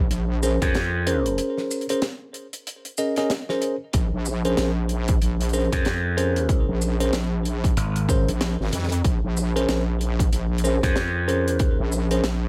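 Swaggering and funky, this glitch hop excerpt with a swung sixteenth feel rides a heavy, saturated wobble bass and a punchy, layered electronic kick, while a deep reggae drum kit adds dry hi-hat, shaker and a high-tuned snare, a bell-like tine electric piano plays bright, clean stabs with sidechain pumping and delay over a Bbm9 chord, and a growly, overdriven slap bass drops out at 1.4 seconds ahead of a break running to 3.9 seconds before returning at 5.7 seconds, all in a close-sounding mix.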